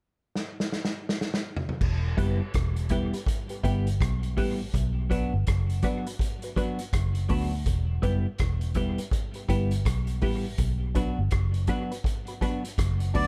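A round, foam-muted electric bass sits up front in this dark, meditative roots reggae excerpt, entering at 1.8 seconds to anchor a slow alternation between Em and Bm. Before it, a vintage drum kit opens with a fill from 0.4 seconds, its punchy kick, medium-tuned snare, rim clicks, toms, hi-hat and dusky cymbals carrying a pumping small-room character with a rolled-off top. A clean, twangy, picked electric guitar joins as accompaniment, bright and compressed with tape echo, alongside a muted, detuned sawtooth dub chord stab that plucks short and deep through a phaser. The 16ths carry a gentle swing, giving the serious groove a loping, unhurried feel. At 13.2 seconds a reedy, breathy melodica appears briefly up front, its nasal plastic tone cut off as the excerpt ends. The production is dry and warm, with little reverb.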